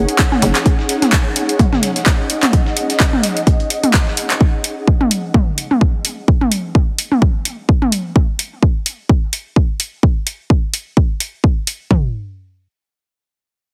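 A hollow, knocking FM bass opens this minimal techno excerpt with a bouncy, fast-attack hit on F#1 that pumps against the kick before it stops at 0.5 seconds. Alongside it, an ethereal, airy pad built from detuned triangle and sawtooth voices drifts over a G#sus4 chord with ensemble chorus, a moving notch and its own reverb, while a very quiet swarming drone of detuned sine and sawtooth tones with ring modulation and granular grain hovers on C#4. Both textures stop at 4.4 seconds, along with a very quiet, gritty sampler-style kit adding hi-hat and a fat snare. The groove runs at 128 BPM in 4/4 with a light swing on the sixteenths, anchored by an up-front house kit with a punchy, tape-tinged kick and toms, an overdriven analog drum machine supplying handclaps and hi-hat, and electronic toms thrown into dub echo. The hypnotic, quirky mood sits inside a heavily compressed, radio-like sound with light reverb, and the house kit carries on until 12.0 seconds, just after the chord drops away at 11.9 seconds.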